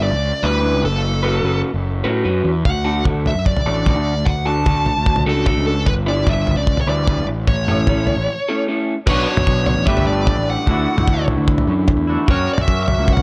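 Studio reverb surrounds this carefree, wistful indie rock passage in D major at 149 BPM, where a dark, overdriven lead guitar carries the melody over a lo-fi, slightly broken-up riff guitar through a small old amp with phaser and an up-front fuzz bass. A cloth-damped, thuddy drum kit with gritty saturation, tight kick, toms and dark crash cymbals enters at 2.7 seconds, and after a short break a clean, twangy fingered guitar with lush chorus joins the riff at 9.1 seconds as the chords shift to Bmadd9 and Gadd9. An airy, breathy pad slips in very quietly at 12.8 seconds, just before the piece is cut off.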